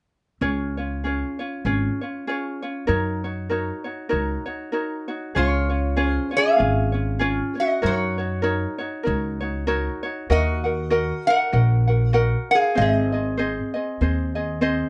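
A metal-body resonator slide guitar carries the melody up front, entering at 5.4 seconds with a metallic, nasal voice, played with fingerpicks and a slide. This relaxed, sunny Hawaiian piece in Db major moves at 97 BPM in 4/4, with a gentle swing on the eighth notes. From 0.4 seconds a light, fingerpicked ukulele provides the accompaniment together with a pizzicato upright bass whose gut strings give it a woody, thumpy tone. Both sit close to the listener alongside the slide guitar, and the harmony moves between Db and Gb6 before touching Ebm and Ab. A moderate small-room ambience adds a touch of space to this warm, acoustic excerpt, cut from a longer piece.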